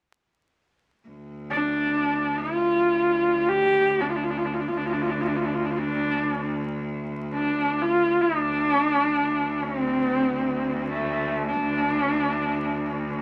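Mongolian folk in a solemn, windswept mood, this fragment of a longer piece opens with a clear, focused bowed cello holding a low D drone with vibrato from 1.1 seconds, joined at 1.5 seconds by a husky, up-front horsehead fiddle that sings an expressive melody with vibrato and portamento above it, all set in a moderate studio ambience under a vinyl crackle.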